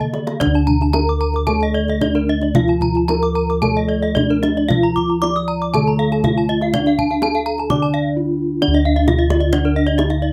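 Balinese gamelan with a brilliant, shimmering mood, heard as an excerpt from a longer piece in which the kendang opens with a short fill and plays another at 8.2 seconds, leading into a new section at 8.6 seconds. A mellow, padded-mallet bronze metallophone carries the melody up front, with paired tuning that produces pulsing beats. Beneath it a lower, band-limited metallophone struck with a wooden mallet plays accompaniment, while soft, round bossed gongs hold the bass and the tight kendang is played with soft hands. Two bright, horn-mallet metallophones spin arpeggios overhead, the one spanning D5 to D6 close-miked and dry, in a detailed recording with little reverb.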